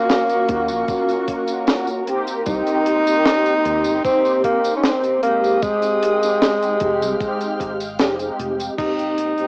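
Vaporwave with a nostalgic, faded mood, where a breathy, scooped tenor saxophone carries the jazz-style melody up front over round, detuned synth brass, a woody string section murmuring in the background, a tight, dry funk drum kit with a high-tuned snare, a glossy chorused synth bass and a thumpy electronic kick, with a band accent at 8.0 seconds, all heard through a cassette home recording on a small speaker.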